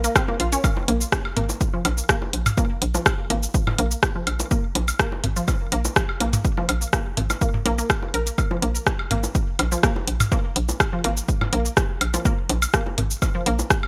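Hypnotic and sparse, this short cut from a longer minimal techno piece runs at 124 BPM in a straight 4/4, built on a Bb5 chord with bright 1980s-style digital production and light reverb. A punchy, tape-warm analog drum machine of cabasa, hi-hat and rim click sits up front from the start, joined at 0.2 seconds by a punchy electronic kick and a layered, small-room percussion bed of electronic woodblock, bongos and toms treated with delay. A hollow, bouncy FM bass knocks between Ab1 and Bb1 with sidechain pumping, while a juicy, squelchy resonant blip pluck repeats a riff through chorus, digital delay and its own sidechain pumping.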